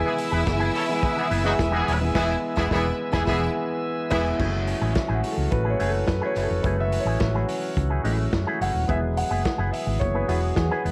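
A small room ambience wraps this driving, glamorous disco excerpt, cut from a longer piece, at 107 BPM in a straight 4/4 feel in F# minor. A hollow-body short-scale electric bass sits up front with a dark, round, amped tone, while a vintage drum kit adds a muffled, lo-fi groove of punchy kick, medium-tuned snare, hi-hat and dark crash cymbal. A clean, compressed guitar through an envelope filter and a subtle chorus comps alongside a concert grand piano with deep bass, and a reedy tonewheel organ holds sustained chords in the background, lightly overdriven with key click and a slow rotary speaker. In the opening seconds a lush, bowed string section carries a second line with vibrato, and a tight horn section plays vintage pop-style stabs in the background, with a band accent from 2.2 s. Both strings and horns stop by 4.3 s, and from 4.4 s the piano takes a solo over chords moving from F#m9 back to E.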